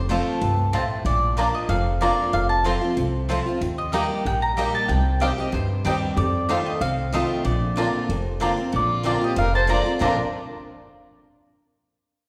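Bluegrass in Bb major at a swung 188 BPM, joyful and driving: a round, picked mandolin carries the melody over a bright, up-front dreadnought guitar and a thumpy, woody upright bass, while a twangy banjo plays a melody in the background, a second mandolin adds stabs, and a rich, nasal fiddle with light vibrato enters at 8.8 s, the band sounding in a reverberant church or concert hall in this short cut from a longer piece.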